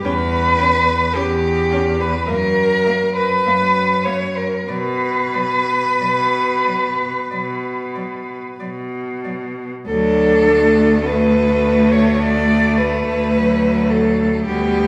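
Four bowed cellos begin together in a solemn, melancholic classical piece, heard from further back in a recital hall whose reverb lends the sound a lingering bloom. The tempo is slow, 45-56 BPM in 4/4, and the rubato feel lets the phrasing breathe freely as the music moves through B minor. Up front, the highest cello carries the lyrical melody with a rich, soft-attacked tone, expressive vibrato and gliding portamento. A second cello sings a smooth, even line beneath it with light vibrato and a distant quality, while a focused cello sits in the background with the accompaniment. The lowest cello anchors the bass with a clear, even voice, and at 9.9 s the harmony opens onto D major for the closing passage of this portion, cut from a longer work.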